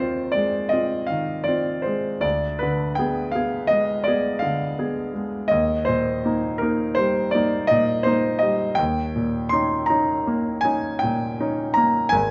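A rubato 9/8 at 54 BPM in dotted quarters carries this nostalgic, tender Romantic nocturne for solo grand piano in Eb major, its clear, smooth, vintage tone with short sustain sitting up front under close, detailed microphones in a moderate large-studio reverb, spanning Ab1 to C6 as the harmony moves from Fm7/Eb through Ddim7 and Eb to Eb7 at 8.8 seconds in this brief cut from a longer piece.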